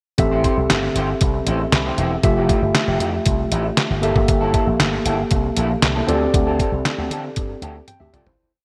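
A detuned 8-bit digital drum machine sits up front in this short early-eighties boogie funk piece, its thumpy kick and medium-tuned snare layered with handclap driving a mid-tempo boogie beat at 117 BPM, with hi-hat and toms bathed in gated reverb. Slap bass through an envelope filter plays a fat, punchy, syncopated boogie line with chromatic approach notes, its tone bright and amped. An overdriven tine electric piano adds barky, gritty held chords in drop-2 voicings, dressed with grace notes and short fills, moving through Am7, Fmaj9, Gm69 and D7sus4. An electric guitar through a small old amp chops out a twangy, slightly broken-up sixteenth-note riff coated in lush chorus. The mood is late-night and slick, with light reverb and a glossy digital sheen, and the piece fades out from 6.3 seconds as a drum fill closes it at 7.9 seconds.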